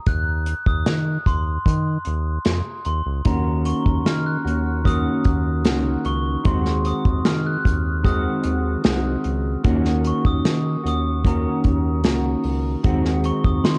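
A bell-like glockenspiel played with soft plastic mallets carries a lush-chorused melody over a round, deep analog bass and an airy unplugged drum kit with gritty 12-bit sampler texture and bundle sticks, before a clean, fingered electric guitar with analog chorus and warbly pitch drift enters at 3.2 seconds in this hazy, lonely bedroom-pop fragment at 75 BPM in Eb dorian, moving between Ebm7 and Ab7/Eb under a worn cassette-tape warble and light studio reverb.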